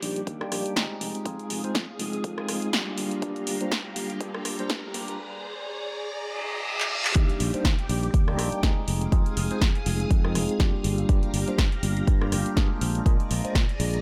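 Groovy and sensual, this filtered disco house excerpt pumps along with a punchy, up-front electronic kick and a tape-warm analog drum machine of claps, hats, rim clicks and snare, a growly fingered electric bass, a clean tine electric piano and a swirling, warbling phased string machine, building through a filter sweep with a riser and reverse cymbal from 2.0 seconds before a drum fill tips it into the drop at 7.2 seconds.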